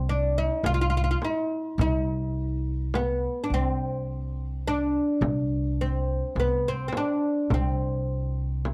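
A straight 10/8 pulse at 105 BPM, counted in eighths, drives this festive, passionate Arabic maqam ensemble piece in C maqam suznak, tuned to A4 = 439 Hz. The fretless oud carries the melody between B3 and F4, its plectrum-plucked double strings sounding woody and up front. Beneath it, the upright bass is played pizzicato on steel strings, holding C2 with a growly, up-front presence. A small frame drum joins at 0.6 s, bright, close and dry under soft hands. Light reverb and a dark, warm production frame this brief cut from a longer piece, which runs to 8.7 s.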